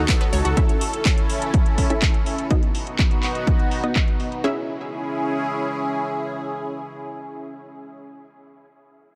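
Progressive house at 124 BPM in C# minor, this short cut from a longer piece feels bittersweet and expansive, moving through D#dim, A and B before settling on C#m at 4.4 seconds. A lush, thick unison pad sits up front, holding sustained chords with a slow attack and long release, treated with chorus, phaser and sidechain pumping. A punchy, full-bodied unison pluck plays stabs throughout with delay and a cassette-tape tint, while a round analog pluck with a filter sweep adds arpeggios in the background for only the first 0.5 seconds. A deep, rumbling detuned saw bass, dark and beating, also sounds only until 0.5 seconds, and an overdriven electronic kick hits up front from 0.1 seconds to 4.1 seconds. A house kit of handclaps and metallic, low-passed hats joins for the first half. Both drum parts were re-recorded in a large room, and light reverb sits over the mix.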